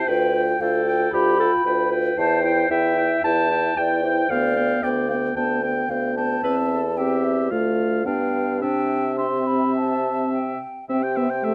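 In a quick 4/4 at 112 BPM with a rubato feel, this lively, spirited classical-period movement for wind quintet in C major is cut from a longer piece, its harmony moving between G7/D and C/E before a Dm–G7–C cadence. A hollow, airy silver concert flute with vibrato and a soft attack carries the melody from C5 to C6 over a warm oboe second line with light vibrato and a smooth top, while a roomy clarinet and a distant, mellow French horn accompany. A vibrato-tinged bassoon joins at 0.1 s on the bass line, and close, detailed microphones with light reverb keep the parts clear.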